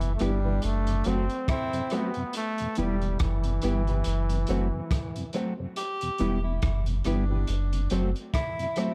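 A brilliant, punchy trombone carries the melody over a round sine sub bass, a very quiet tonewheel organ with slow rotary speaker, and a gritty, saturated breakbeat kit of tight kick, hi-hat and rim click in this hypnotic, meditative roots reggae fragment at 70 BPM, swung on the 16ths and moving between Em and F#dim. From 0.2 seconds a distant, roomy tenor saxophone adds a second line with vibrato, joined by a dark, clean fingered electric guitar with warbly pitch drift and a woody, slightly detuned upright piano playing short stabs in the background. The trombone drops out at 5.3 seconds and the bass at 8.1, while tape echo on the horns, guitar and drums fills an echo-heavy studio mix.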